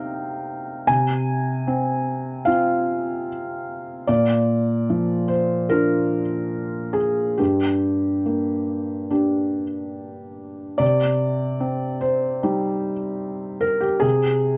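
A dark, lightly reverberant recording puts a felt-muted upright piano up front, its soft, boxy tone and audible action noise carrying a wistful, intimate neoclassical minimalist piece in a loose rubato 4/4, moving through C minor harmonies before the opening phrase returns at 10.8 seconds in this short passage cut from a longer work.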